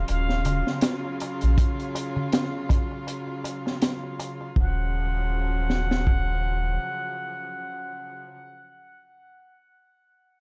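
A dark, small-room production frames this melancholic, smoky trip hop fragment, where a crunchy, saturated breakbeat kit with a punchy kick and high-tuned snare sits up front beside a deep, round dub sub bass that stops at 6.8 s, while a clay-shelled darbuka played with soft hands sits in the background until 4.5 s, a clear, earthy string section holds sustained rootless Ebm9 chords, and a brilliant plunger-muted trumpet carries a jazz-style wah-wah melody through tape echo and vintage 12-bit sampler grit.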